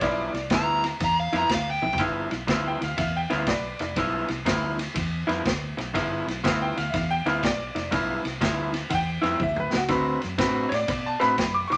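A gritty, rollicking electric blues shuffle in G mixolydian at 121 BPM opens on a G6 chord with a slightly broken-up, lo-fi guitar riff, a round foam-muted bass, a punchy vintage kit with dark cymbals and a woody, slightly detuned upright piano, while an overdriven lead guitar line sings from 0.5 to 2.0 seconds before the bright piano takes a solo from 2.0 seconds, moving to D6 at 9.9 seconds under a moderate studio reverb.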